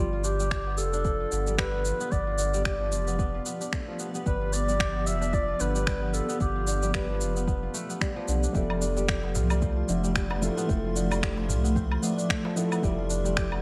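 Peaceful and warm, this organic downtempo excerpt in G mixolydian moves at 112 BPM in 4/4 with swung 16ths, as a soft-attack, distant clarinet sings the melody through tape and slapback echo until 7.7 seconds, over ringing, fingerpicked kora arpeggios that carry the same echoes. Beneath them, a round sine sub bass and a cloudy, detuned granular pad both pump with the sidechain, while a soft electronic kick and a produced kit of electronic shaker, finger snaps and woodblock keep the groove. At 8.5 seconds the harmony shifts from G7 to Fmaj7 as a dark, thick-felt upright piano with audible action noise joins on echoed accompaniment, and a very quiet, crisp, close darbuka enters at 8.6 seconds, all set in a moderate recital-hall reverb with a big arena sound.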